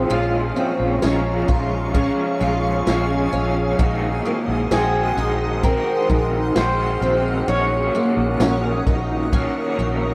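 A rough home-demo sound bathed in a lush hall reverb opens this short, melancholic and ethereal dream pop excerpt in Bb minor at a slow 65 BPM, moving through Bbm7, Ab7/Bb and Gb6/Bb. A dark, slightly broken-up electric guitar carries the melody with harmonic tremolo and delay, while an up-front overdriven garage guitar with tremolo and chorus plays the accompaniment, a shimmering octave-doubled twelve-string acoustic picks arpeggios with audible finger squeak, and a bright, blurred granular pad spreads a hazy bed of sustained chords. Underneath, a round, foam-muted electric bass holds a low Bb, and a vintage kit with punchy kick, snare, ride and tambourine, its top rolled off, enters at 0.1 s and stops at 9.5 s.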